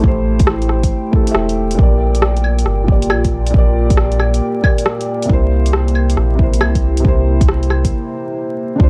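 A deep, up-front electronic kick anchors this nocturnal, melancholic future garage excerpt at 137 BPM with a swung 16th-note feel. It plays alongside a round, mellow dub sub bass with tube saturation and is joined at 0.4 seconds by a deep house kit of claves, dark hi-hats and rim clicks that plays until 7.9 seconds before a short break. A felt-muted upright piano, soft and intimate with audible action noise and analog delay, moves through Am7, Bb6 and C7 over a moody analog pad colored by chorus and phaser, with sidechain pumping on the piano, pad and bass. The sound is dry and gritty, with a hardware edge and vinyl crackle.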